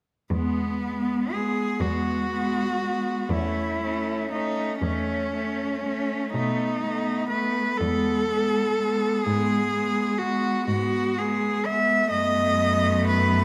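Classical and lyrical, this tender fragment for cello ensemble unfolds in a slow, rubato 6/8 at 41 BPM in E major, with a clear, up-front bowed cello singing the melody with smooth vibrato over a rich, distant second line, an expressive accompanying cello sliding with portamento, and an intimate, warm bass cello with soft attack and airy bow, all four sounding from 0.3 to 13.4 seconds in a moderate recital hall reverb.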